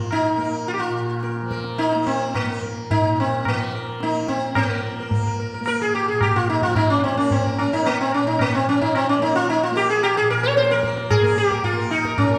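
Hindustani classical music in raga Bhimpalasi, centred on Bb, this meditative, solemn passage is cut from a longer piece and moves at 109 BPM in 4/4, gradually speeding up throughout its 12.4 seconds. The sitar carries the melody up front, its plectrum-plucked tone buzzing and shimmering with the halo of its sympathetic strings as it ranges from Bb3 to Db5. Beneath it, the tanpura holds a softly plucked drone between Bb2 and Bb3, set well back in the mix with its own buzzing glow. The low-tuned tabla enters at 0.1 seconds, sounding ringing yet close and dry against the other parts. A reverberant scoring-stage ambience surrounds the music, and the phrase shifts into a new section at 4.6 seconds as the tempo keeps pressing forward.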